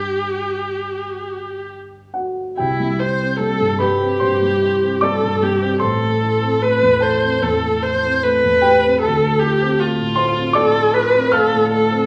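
Classical romantic chamber music for viola and grand piano, this serene, tender passage from a longer piece unfolds in C major at a rubato 67-79 BPM in 4/4, its harmony moving from G to C, then A minor and D minor seventh. A single bowed viola carries the melody up front with a warm, soft-attacked tone, expressive vibrato and gliding portamento, while the dark, mellow concert grand accompanies with deep bass and short-sustained, smooth notes that carry a vintage character. A recital hall reverb of 1.4 seconds adds a wet glow to the pair, blended with the closer ambience of a small room.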